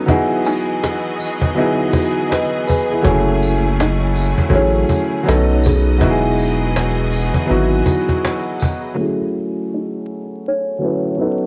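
Swung sixteenths at 81 BPM in 4/4 drive this hazy, reflective lo-fi hip hop excerpt in F# dorian, where a snappy, up-front cajon and a distant, jingly tambourine support a clear, woody upright piano with a cassette tape tint, a buzzing, hollow-toned kalimba melody tucked in the background, lush bowed strings with vibrato holding chords until 8.9 seconds, and a deep, round dub sub bass entering at 3.0 seconds, all wrapped in vinyl crackle and small-room ambience before a filter sweep sets in at 9.0 seconds.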